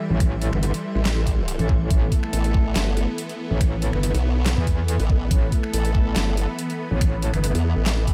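Heavy wobble dubstep at 141 BPM in a half-time 4/4 feel, this aggressive clip sits on a single A minor chord throughout its roughly eight seconds. Two wobble basses carry the weight up front: a metallic, FM-edged one that is saturated and overdriven with chorus, and a second built on a pulse wave pushed through a formant filter, which joins at 1.0 s. An overdriven, knocking electronic kick sits prominently alongside a layered dubstep kit of deep snare, bright hi-hats, handclaps and finger snaps, both treated with studio reverb. Beneath them a lush, detuned supersaw pad holds sustained chords with a phaser and sidechain pumping, while a cloudy granular pad drifts in the background with its own reverb and ensemble chorus. A mellow brass section adds delayed stabs from 0.4 s to 7.3 s, and the whole excerpt sits in a light digital ambience.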